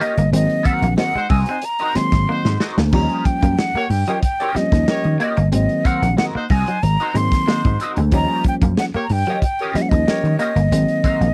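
A dry, close 1970s-style studio sound frames this gritty funk excerpt, cut from a longer piece and moving at 92 BPM in a straight 4/4 around Eb mixolydian, with chords shifting between Ab9 and Eb9. Up front, a breathy, mellow concert flute carries the melody with vibrato and tongued notes, its hollow tone sitting close to the microphone, while a tight horn section with light vibrato plays a punchy second line beneath it until 10.6 seconds. A saturated breakbeat kit with dark cymbals, a punchy kick and a rolled-off top drives the groove through hi-hat, snare and splash, adding a drum fill at 2.3 seconds. A vintage slap bass enters at 0.2 seconds, amped and prominent, and a worn, slightly out-of-tune tine electric piano follows at 0.3 seconds with lightly overdriven stabs through a combo amp. Two guitars complete the texture: one at the edge of break-up, picked and compressed, comps with wah and ensemble chorus, while a clean, fingered twangy guitar repeats a low riff in the background.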